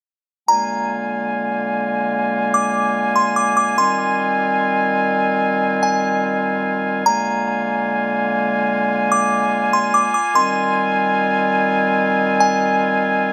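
A delicate, tinkling FM synth bell melody and a clear, up-front woodwind section holding sustained chords in a classical style with light vibrato begin together at 0.5 s. This hazy, ethereal hip hop runs at 146 BPM in a half-time 4/4 feel, cycling between Bb7 and Fm9 in a dark production tuned to A4 = 439 Hz. The bright bell carries chorus and analog delay, and a moderate echo-chamber reverb surrounds the mix until the bell drops out at 12.8 s, leaving the woodwinds to close the passage at 13.3 s.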